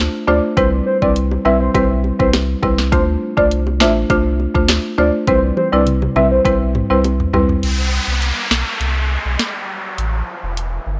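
A round, deep sub bass opens this sunny, bouncy dancehall excerpt at 102 BPM in C major. At 0.3 s a woody, buzzing marimba pumps up front beneath a soft, octave-layered triangle lead colored by chorus, phaser and analog delay, with tight, high-tuned bongos tucked in the background. An electronic afro-pop kit with a deep kick and sharp snare carries the Dm7 to Cmaj7 groove and adds a drum fill, then once the lead and marimba have finished, a break begins at 7.6 s, where an up-front downlifter sounds over the bass and drums before an A5 chord arrives, all in a dry, gritty hardware sound with digital ambience.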